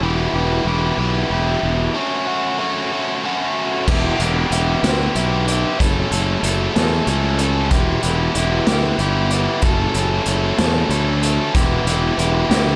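Indie rock in a bittersweet, moody 6/8, this dry clip sways between E minor and F-sharp minor chords as a biting, double-tracked overdriven guitar riff and a growly, fuzz-drenched fingered bass sit up front, joined at 3.9 seconds by a raw garage drum kit with a punchy kick, dark cymbals and a gritty, saturated small-room sound.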